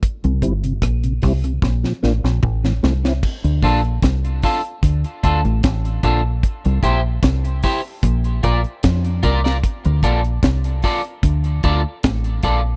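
A dry, close recording in a small room, in the manner of a 1970s studio, frames this hypnotic, spacious dub reggae excerpt, cut from a longer piece. A tight-kicked drum kit with a high-tuned snare, dusky cymbals and toms sits up front beside a foam-muted, round fingered bass, while a mellow tonewheel organ with chorus vibrato and a slow rotary speaker carries the opening break until 3.1 seconds, topped by a drum fill from 1.6 seconds. At 3.6 seconds a picked electric guitar, slightly broken-up and bathed in lush chorus and dub echo, takes over the accompaniment.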